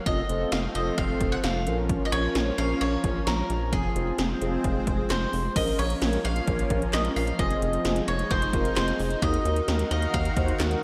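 A picked bowl-back mandolin, its double strings trailing an analog delay, opens this cool, nocturnal synth-pop excerpt together with a lush, detuned unison pad that holds sustained chords, bright and thickened by chorus and phaser. At 0.1 s the rest of the band arrives at a straight 131 BPM in 4/4: mellow synth brass fills in round, dark accompaniment with chorus and vibrato, and a rubbery square-wave bass sits up front with a hollow, bouncy, nasal pluck. The 80s electronic pad drums bring a punchy kick, a gated snare, metallic hi-hats, handclaps and crash cymbal, all pushed through overdrive, with a short room on the claps and hats. In Bb minor, the harmony moves from F to Bbm and Fm, then a second section from 5.6 s moves through Bbm, Fm7 and Ebmadd9. A wet digital hall reverb soaks the mix, lending the piece a dreamy, late-night haze.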